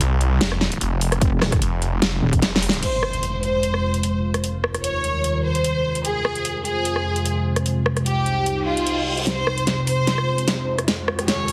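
A snarling, distorted saw bass growls through the opening drop of this chaotic, aggressive heavy wobble dubstep excerpt, joined briefly by a saturated, detuned wobble bass and a punchy electronic kick between 1.2 and 2.4 seconds, while a tape-warm dubstep kit with a huge snare, metallic hats, rim clicks and crashes drives the half-time groove throughout. At 2.8 seconds an electronic impact hits and a lush, bowed studio violin section with vibrato and tape echo takes the melody, soon underpinned by an evolving wavetable pad that morphs under a phaser, filter sweep and sidechain pumping. A reverse cymbal and riser lead into a drum-fill build-up over F minor and Ebadd9 chords, all pressed into a heavily compressed, radio-like sound with light reverb.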